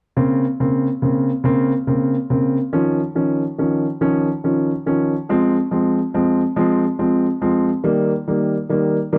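Melancholic and aching, this short pop fragment is cut from a longer piece. It moves at a slow 47 BPM counted in dotted quarters, with a straight 6/8 feel. A single upright piano carries the accompaniment from 0.2 to 9.2 s, staying in a middle register and sounding warm, woody, natural and close up front. Its harmony moves from Bbmadd9 to Dbadd9, then to Fm, and settles on Eb, giving the passage a yearning, unresolved quality. The sound is dry and intimate, a close 1970s-style studio recording with a small room's ambience around the instrument.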